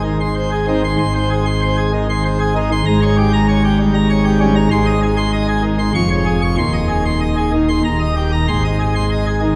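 Brilliant and majestic, this classical organ toccata in 3/4 is a short passage cut from a longer piece, played by a solo pipe organ on full plenum from 0.0 to 9.6 seconds. The baroque-voiced registration blazes with mixtures and audible chiff, spanning a huge compass from Eb1 to Db6 and sitting up front. A wet church reverb with a 3.4-second decay fills the space, while the harmony passes through a diminished chord and a Db/F colouring before settling back on Ab.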